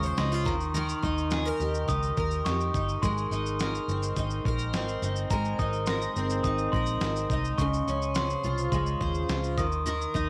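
A picked steel-string acoustic guitar sits up front in this easy-going, carefree acoustic pop excerpt, its double-tracked dreadnought tone warm with finger squeak as it carries the accompaniment throughout. Beneath it, a vintage electric bass played with the fingers gives a dark, round, punchy, foam-muted low end. A dusty, sampler-style soul drum kit adds a thumpy kick, a medium-tuned snare and shaker, all gritty and compressed with overdrive. High above, a glockenspiel struck with rubber mallets plays a mellow, bell-like second line, close-miked and touched by tape echo. The straight 4/4 groove moves from Eb through Abadd9 at 3.0 seconds and Dbmaj7 at 7.6 seconds before landing on Eb5, all set in a light studio reverb.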